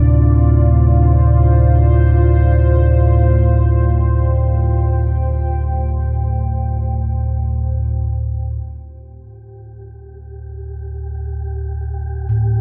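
A cavernous, ominous dark ambient drone in free time and D minor, where a rumbling, wave-folded low drone sits up front beneath a full-bodied, chorused pad holding a Dm7 chord that fades out by 8.6 seconds, while very quiet bronze gamelan-type gongs play soft arpeggios throughout and a faint, breathy wind-like texture enters at 9.2 seconds over a bare D5 as the excerpt breaks off.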